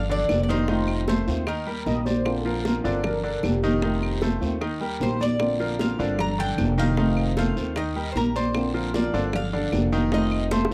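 A dry, close recording in a 1970s studio style carries this relaxed, sunny excerpt of Cuban son and guajira in Bb major, moving at 153 BPM in a straight 4/4 over a repeating cycle of Gm7, F7, Eb and Bbadd9. An up-front upright bass with woody gut-string pizzicato anchors the low end, while a brilliant grand piano, intimate enough that its action noise is audible, spins arpeggios throughout. A dark, boxy flamenco guitar, thumb-plucked with a trace of finger squeak, fills in the accompaniment, and round, low-tuned bongos played with soft hands sit close alongside distant, high-tuned congas struck with hard hands, with woody claves in the background and a raspy guiro sounding in a live room. The picked, metallic tres carries the melody with its octave-doubled strings, pausing at 2.0 seconds while a velvety, detuned synth lead with chorus and vibrato slips in a short second line until 4.2 seconds. 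The tres then returns at 5.0 seconds, and a drum fill at 10.5 seconds closes the passage.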